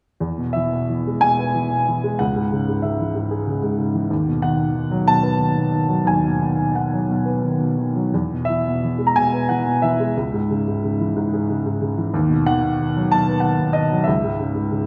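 A worn baby grand piano begins alone at 0.2 s, playing a bittersweet, moody classical piece in 3/4 at 86-95 BPM with a lyrical, rubato feel, moving through E, C#m and B7/D# harmonies. The piano sits up front with a warm tone and long sustain, spanning C#2 to A#5, wrapped in the wet reverb of a recital hall. The passage is cut from a longer piece and ends at 14.9 s on a C#m chord.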